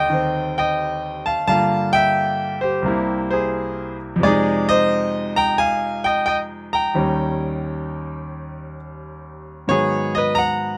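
A relaxed swing at 88 BPM in 4/4, with the eighth notes lilting at a 67% swing, carries this short solo jazz passage in Eb major. A single grand piano plays the whole fragment of about 10.8 seconds, its tone clear and natural as it ranges from C2 up to Bb5. The harmony moves through Ebmaj7, Gm7, C7 and Fm7, then shifts to Eb7 at 7.0 seconds and lands on Abm7 at 9.7 seconds, a turn that adds a touch of color before the cut. The piano sits up front in a dry, intimate sound captured by close, detailed microphones, so every note comes through plainly. Tuned slightly low to A4 = 436 Hz, this clip is taken from a longer piece and keeps an easygoing, swinging mood throughout.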